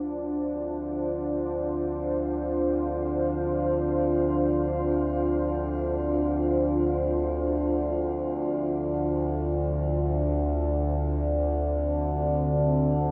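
Cavernous and unsettling, this dark ambient drone excerpt in D minor unfolds in free time as a resonant drone with moving overtones and a deep, detuned analog pad holding a sustained D minor chord both fade in from 0.0 to 13.1 seconds, the pad's shimmer reverb and the drone's chorus melting into a huge, dreamy wash with a cassette tape tint.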